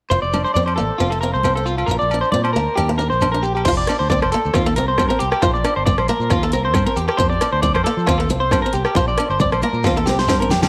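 Warm and joyful, this short cut from a longer highlife guitar band piece swings easily in 4/4, with a twangy, slightly broken-up electric guitar up front playing bright arpeggios through analog chorus and tape echo over a boxy, fresh-stringed acoustic guitar picking swing-style accompaniment and a round, punchy fingered bass. Very quiet congas play alongside a grainy shekere and ringing agogo bells that sit in the background, and at 3.7 seconds an electronic dubstep drum kit enters with a huge snare, metallic hats, rim clicks and crashes, ending in a drum fill at 9.8 seconds. The chords move among F, Bb and Eb colours, all set in a moderate echo-chamber reverb.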